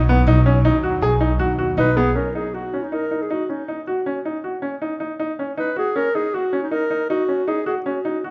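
Playful and shimmering, this contemporary chamber piece in an uneven 5/4 meter moves at 158 BPM, cut from a longer work, as a bright baby grand piano spins brilliant, short-sustained arpeggios from 0.1 seconds to the end. Beneath it, a woody pizzicato upright bass and an evolving, detuned wavetable pad with chorus sit under a rootless G#m/B chord until 2.1 seconds, the pad morphing softly in the background. A mellow, soft-attacked clarinet enters at 1.8 seconds with a classical-style solo melody, carrying over a C#sus4 chord in a moderate scoring-stage reverb.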